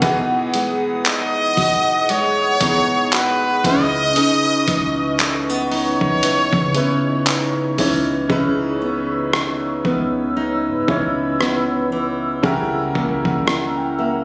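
A slow 58 BPM groove in 4/4 with a swung sixteenth-note feel sets up this late-night, sensual contemporary R&B passage in C# minor, cut from a longer piece. A gritty, sampler-style soul drum kit sits up front with a thumpy kick, hi-hat, rim click and handclaps, its compressed sound re-recorded in a large room, and it drops out at 13.8 seconds. Fingerpicked nylon-string guitar arpeggios, bright and classical with tape echo, sit up front alongside a warm, natural-toned grand piano accompaniment, while a deep, boomy 808-style bass with a fast attack stays in the background. A hollow, airy, flute-like pad holds sustained chords behind them, colored by chorus and sidechain pumping. From 1.1 to 7.7 seconds a bright solo trumpet with vibrato and a smooth top carries the melody through its own tape echo, as the harmony moves from Emaj9 to C#m9 and closes on F#7b9/C#; the recording sounds captured on a phone in the room, with light studio reverb and compression.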